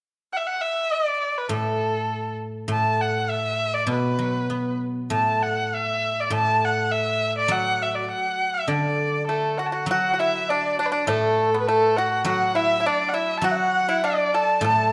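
A bowed erhu opens this pastoral, festive Chinese chamber piece at 0.3 s, its rich, earthy melody carried up front with light vibrato and portamento at about 101 BPM in 2/4, loosely rubato. A ringing, silvery guzheng joins at 1.5 s with low accompaniment, and at 9.3 s the second-line parts arrive: a hollow, airy bamboo dizi with a buzzing membrane set in the background, and a bright, percussive fingerpicked pipa up front. Closely miked in a moderate stage reverb, the passage is cut from a longer work, moving into a new section at 9.9 s.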